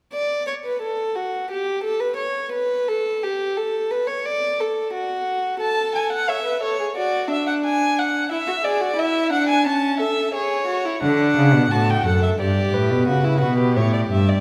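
A dark, intimate violin, played sul tasto with a soft attack, opens this joyful, elegant baroque-style fugue fragment for string quartet alone at 0.1 s; an expressive second violin with vibrato and portamento takes up the melody above it at 5.6 s, and a warm cello enters on the bass at 11.0 s, each part bowed by a single player in a wet concert hall reverb.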